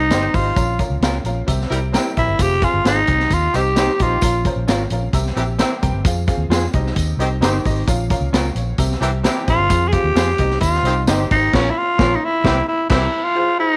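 A light studio reverb frames this brief, uplifting 1960s-style soul excerpt at 131 BPM, where a raspy, gritty tenor saxophone with scooped notes sings the melody up front from 0.0 to 4.5 seconds and again from 9.5, over a bright, slightly detuned upright piano, a round, foam-muted fingered electric bass, a punchy horn section, twangy guitar stabs through a small old amp, a vintage drum kit with dark cymbals and a high-tuned snare, and a jingly tambourine, as the band hits an accent at 11.5 seconds.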